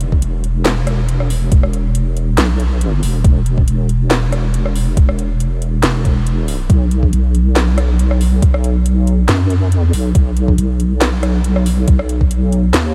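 A half-time groove at 139 BPM in 4/4, with a light 16th-note swing, drives this dark, heavy slice of deep dubstep cut from a longer piece. Up front, a layered electronic kick drum knocks from 0.1 seconds until 12.3 seconds. Beneath it, a garage drum kit of handclaps, metallic hi-hats, rim clicks and a cracking snare adds a produced, electronic top end, and both drum parts carry a tape-warm tone. The deep, soft wobble bass runs from the start until 12.9 seconds, spanning E1 to F#2. It is sustained, compressed and sits up front, with triangle- and sine-like roundness, a fast attack and a chorus effect. Little reverb is used, so the mix stays close and dry.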